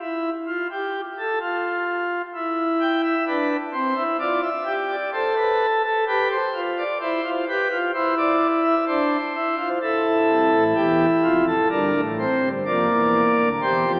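A classical, baroque-style four-part fugue for pipe organ, heard as a short section cut from a longer piece, with an elegant, stately mood in a steady 4/4 with a straight feel. The pipe organ plays alone throughout its 14 seconds, its principal chorus sounding full and up front, with a romantic voicing that spans from a deep D1 to G5 at the top. The opening bars pass before any chord is established, and the harmony settles in at 2.3 seconds on C over E, moving through D minor seventh over F, G7, C over E and F before reaching G minor seventh at 11.7 seconds. A drenched church reverb with a long 3.4-second decay surrounds the organ, giving a sense of a vast stone space. The whole recording is filtered through a narrow, lo-fi AM radio sound, lending the grand instrument a distant, broadcast quality.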